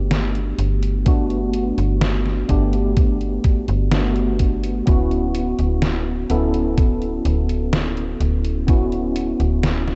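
This vaporwave fragment drifts in a faded, dreamy haze, its slow 4/4 pulse played straight. A mellow tine electric piano carries the harmony up front, clean and direct in tone yet coloured by analog chorus, vintage 12-bit sampler grit and tape echo as it moves from Gmaj9 to Dmaj13 at 4.9 seconds. Beneath it, a slap-like FM bass sits low and close, its snappy, metallic attack decaying into a mellow, rounded tail. A detuned 8-bit drum machine supplies hi-hat and a medium-tuned snare, and a thumpy electronic kick joins at 1.1 seconds and drops away at 8.9 seconds; both drum parts sound sampler-style and tape-softened, as if re-recorded in a large room. The overall production is dark and cassette-worn, with a light reverb and digital ambience, and the top end is capped at 8.0 kHz, giving the whole piece a dusky, muffled glow.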